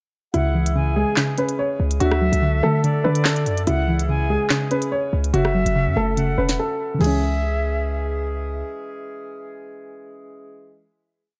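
A half-time drill beat drives this short, menacing hip hop piece, with a sharp snare layered with handclaps, crisp skipping hi-hats broken by fast rolls, rim clicks and a crash cymbal from an electronic, produced kit. Underneath, a hard-hitting 808-style bass sits up front with punchy, heavy long sub-bass notes that slide in pitch. A dark grand piano carries a looping melody that feels sampled, mellow and worn, with intimate action noise, a low-pass filter and digital delay. Above it a bright concert flute adds a sparse, airy counter-melody with expressive vibrato, while a soft pluck plays a nasal, detuned pedal-note arpeggio in eighths with chorus and a filter sweep. A clear woodwind section holds a tight, classical-style pad with light vibrato. After a brief break the drums drop out at 7.1 seconds. Piano and flute fall away at 8.2 seconds and the bass at 8.6, while the cold final chord of C#m rings on the pluck and woodwinds until 10.9 seconds in a studio reverb.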